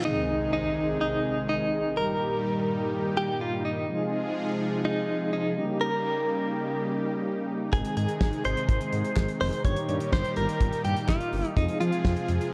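Synth-pop at 125 BPM in a straight 4/4, melancholic and nocturnal, this excerpt opens on a reverse cymbal and impact while a clean, direct-recorded electric guitar carries the melody with tremolo and tape echo over mellow, detuned synth brass and a bold, warbling analog pad, both thickened by chorus. At 7.7 seconds a smooth sawtooth synth bass and a damped 70s drum kit enter, the kit dry and up front with a fat snare, tight kick, hi-hat and handclaps. Chords move through Ab, Eb/G, Fm and Eb7 inside a dark production with a lush hall reverb.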